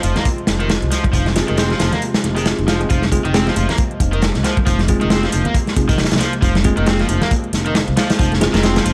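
A swaggering, funky breakbeat groove swung on the sixteenths, cut from a longer piece, built on an up-front crunchy drum kit with a tight kick and dark, rolled-off top, a woody, growly pizzicato upright bass, a bright overdriven garage guitar riff with analog delay, a metallic electronic hi-hat tucked in the background, very quiet ringing congas, and a faint warbling, nostalgic lo-fi pad holding the F minor chord, while a bell-like tine electric piano joins at 1.4 seconds with clean stabs trailed by delay, all in a dry, gritty small room.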